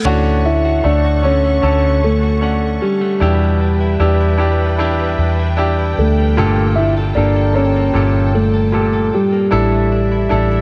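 A straight 4/4 pulse at 76 BPM carries this heartfelt, hopeful pop ballad in D major, a short excerpt cut from a longer piece. A mellow tine electric piano sings the melody, while a bright concert grand piano with deep bass and short sustain fills in the accompaniment. From 0.1 seconds a punchy, round, foam-muted electric bass sits up front, a clean electric guitar recorded direct picks compressed arpeggios in the background, and a veiled string section bowing con sordino with vibrato holds lush sustained chords. The harmony moves through Dmaj7, Em7, Gmadd9 and Asus4, ending unresolved on the suspended chord. A small room ambience gives the whole a dark, warm production.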